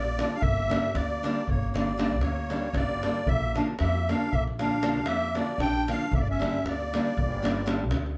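Balkan folk in a Balkan wedding band style, this virtuosic, restless excerpt moves at 232 BPM in eighths in 11/8, with a reedy, shimmering musette accordion up front carrying the melody, a mellow clarinet playing a soft-attacked second line, a fingerpicked nylon-string guitar accompanying, a woody pizzicato upright bass on gut strings, and a deep, distant davul, all played live in one room with moderate studio reverb over a G dorian sharp4 harmony moving between Gm and Bb.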